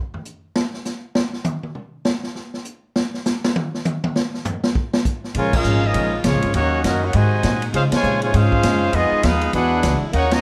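A moderate club reverb gives this sultry big band swing excerpt a roomy, distant kit sound, and the drums open alone with a solo of boomy kick, snare, toms and cymbals at a brisk 200 BPM. At 5.3 s the band arrives in Bb minor with a woody, thumpy upright bass, a mellow trombone section on the second line and a bright picked steel-string acoustic guitar in the background. A moment later, at 5.4 s, a clear trumpet section enters carrying the melody up front, along with a very quiet saxophone section holding sustained chords. Band accents land at 5.5 and 7.9 s over a progression moving from Bbm7 through Ebm7, Ab7 and Dbmaj7 toward Fm7b5 and E9.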